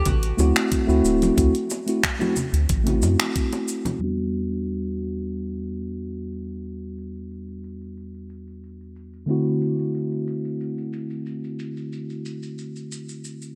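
Sunset chillout with a wistful, warm mood, taken from a longer piece. It opens on a D7 chord: an acoustic flamenco guitar carries a fingerpicked melody with audible finger squeaks, treated with analog chorus and digital delay. Beneath it sit a round, deep, up-front analog bass, a knocking electronic kick, and ringing congas and bongos. A smooth R&B drum kit with finger snaps, warm hats and shaker runs through most of the recording, joined early by a mellow, clean tine electric piano that plays accompaniment through a low-pass filter and delay. By 4.0 s the guitar, bass, kick and hand drums have dropped away, and from 4.0 s to 13.6 s the harmony moves to Em7 and back to D7 while a filter sweep plays across the electric piano. The lush hall reverb and bright 1980s-style digital sheen give the piece a glossy, spacious finish.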